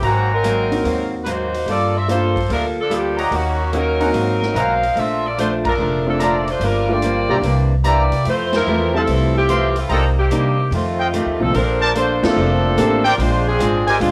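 Energetic and joyful, this big band swing excerpt puts a tight, clear saxophone section up front on the melody, while a trumpet section with a smooth top and light vibrato adds stabs, dropping out briefly before returning at 3.2 seconds. A woody pizzicato upright bass anchors the groove beneath a boxy, old-stringed picked acoustic guitar, an intimate grand piano that enters at 0.7 seconds with audible action noise, and a low-level drum kit with dark cymbals and a punchy kick in a big room. Band accents punctuate the passage, and the horns, guitar, piano and drums carry the color of a home cassette recording under light studio reverb.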